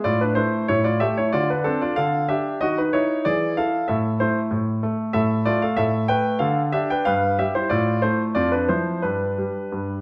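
Set in a wet recital hall with a 1.3-second reverb tail and a dark, warm production, this graceful, playful fragment of a longer classical-period piano sonatina features a single clear, polished grand piano, placed up front, playing solo from F2 to G5 in a rubato 2/4 at 94 BPM, tuned to A4 = 441 Hz, its harmony moving from Am through Dm, E7 and G7 before coming to rest on G at 9.0 seconds.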